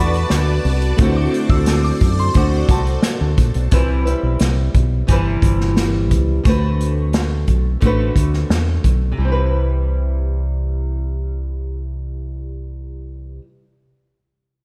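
A sunny, nostalgic indie bedroom-pop excerpt opens with a glassy, crystalline FM synth bell with tremolo and diffuse delay, a mellow reedy electric piano with a cassette-tape tint, and a shimmering string-machine violin pad. Beneath them sit a dark, fingerpicked flamenco guitar soaked in lush chorus and warbly pitch drift, and a round, up-front fingered electric bass. The bell stops at 2.9 seconds and the piano and strings at 3.7 seconds, leaving guitar, bass and a punchy, roomy acoustic kit played with bundle sticks until the drums drop out at 9.0 seconds, all in a small room with light reverb.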